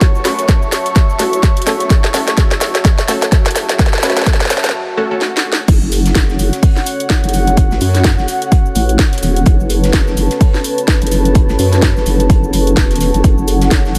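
A punchy, overdriven electronic kick drives this gritty, swaggering bass house cut at 127 BPM in 4/4, with a 58% swing on the sixteenths and a layered house kit adding a cracking snare, bright hats, cabasa and crash. Cut from a longer piece in F# minor, it opens on a build-up where a bold, detuned orchestra-hit-like synth stab rides a filter sweep with digital delay and its own reverb, stopping at 5.2 seconds as drum fills carry the tension. Underneath, a nasal, resonant vowel-sweep wobble bass with tube saturation and chorus pumps against the kick, while a moody analog pad sustains dark sawtooth chords and a warbly, nostalgic tape-like pad adds lo-fi colour. A brief electronic swell in the background fills the break before the drop lands at 5.7 seconds. From there a very quiet acoustic drum kit with a fat snare and rolled-off top joins the mix, all set in light reverb.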